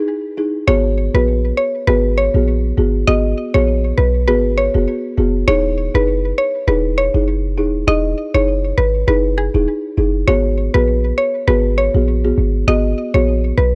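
Dry and gritty, this short dancehall cut sits in a small room, its parts close and up front. A folk marimba played with soft mallets opens alone at 0.0 s, its hardwood bars giving a woody, mellow, rustic accompaniment in G# minor at 100 BPM, with a light 16th-note swing. At 0.7 s a clean 808-style bass arrives, deep, boomy and dark, its sine tone striking fast and then decaying. At the same moment a mallet-like synth pluck takes the melody, a round, percussive FM tone with a noise layer, colored by chorus and tape echo. The harmony moves slowly between Emaj7 and G#m7, and the mood stays tough and hypnotic, a fragment cut from a longer piece in a tuning just under standard pitch.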